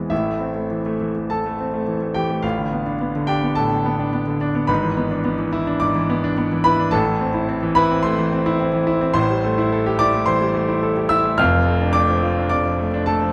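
A clear, intimate grand piano sits up front in a recital hall, with moderate reverb around it and the natural sound of the instrument's action audible beneath the notes. This is a virtuoso classical piano study in A minor, heard as a short section cut from a longer piece, lasting about 13.3 seconds. The solo piano moves at 107 BPM in 4/4 with a flexible, rubato feel, spanning the keyboard from F1 up to F6. Its harmony passes from Am through Bm7b5/A and E7/G# back to Am, then to Am7 at 9.2 seconds and Dm/F at 11.4 seconds. The mood is sparkling and heroic, with the instrument tuned slightly low to A4 = 439 Hz.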